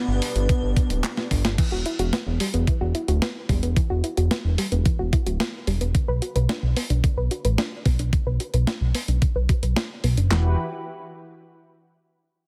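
Driving and nocturnal, this synthwave excerpt in E minor moves at 110 BPM, opening with a smooth, nasal synth lead and an airy, dreamy second lead in the background, both carrying chorus and tape echo over a lush, bright unison pad, while a fat, detuned analog bass pumps up front beneath two sampler-style 12-bit drum machines with a thumpy kick, handclaps, crash, hi-hat and a softly clipped snare; after a drum fill, a round, gentle pluck takes up echoing arpeggios at 1.6 seconds as filter sweeps move through it and the bass, until the pad returns at 10.3 seconds in a dense, dry, heavily limited mix.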